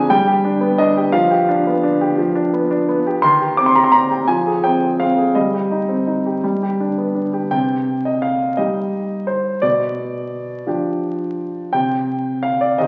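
A baby grand piano plays alone from the start in this restless, dramatic classical-period sonatina in C minor, moving in 6/8 at 57 dotted-quarter beats per minute. Its warm, natural, up-front tone spans B2 to D6, with harmonies moving from G through C minor and F minor before returning to G ahead of a second passage that begins at 7.5 seconds. The recital hall's long, wet reverb and the crackle of a very old 78 rpm record surround this brief fragment cut from a longer piece.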